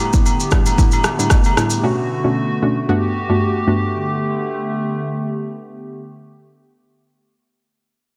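Breezy and romantic, this short excerpt of afrobeats moves at 114 BPM in 4/4 with a light 16th-note swing, drifting through A9sus4, Bm9 and Gmaj9 chords before returning to A9sus4. A hollow, flute-like pad holds sustained chords through the whole 6.0 seconds, its soft attack treated with chorus and gently pumped by sidechain. Up front beside it, a round, dark pluck with a fast, decaying attack and a chorused, detuned edge plays the accompaniment until 3.8 seconds. A deep house drum kit with a deep kick, rim click and shaker sounds electronic and tape-warm, with soft clipping on the snare, but it is heard only briefly, stopping at 1.8 seconds. Quieter agogo bells and woodblock, joined by tube shaker and group handclap, add a compressed, saturated acoustic sparkle, all within a light reverb and digital ambience under a dense, heavily limited modern master.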